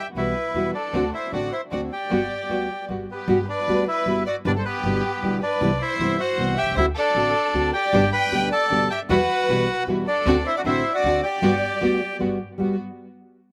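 A reedy, bright bandoneon carries the melody up front in this playful, passionate tango cut from a longer piece, swaying in a rubato 3/4 as a rich, focused violin section shadows it on a second line, a thumb-plucked, full-bodied nylon-string guitar supplies accompaniment, a woody, growly pizzicato upright bass anchors the low end, and a soft, intimate sul tasto chamber string section adds background stabs until 3.0 s and again from 7.9 s, all captured dry in an open-air setting with slapback echo on every part except the bass.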